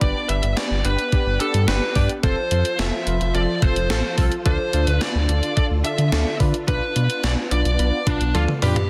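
A synth-pop fragment with a cool, driving mood, set in a straight four-four pulse and cut from a longer piece. A smooth, overdriven electric guitar carries the picked melody over analog keys built from pulse and sawtooth tones, whose chorus and filter sweep give the accompaniment an evolving, decaying shimmer. Behind them, a silky string machine holds mellow sustained chords with a slow attack, long release and ensemble chorus, sitting in the background. Up front, a round, deep analog bass with a detuned, dark sustain anchors the harmony as it moves from G to F, D minor and B diminished. A gated 80s digital drum machine with a thumpy kick, hi-hat, toms and a gated-reverb snare drives the groove and closes with a drum fill from 8.3 seconds, all set in light digital ambience under a dense, heavily limited modern master.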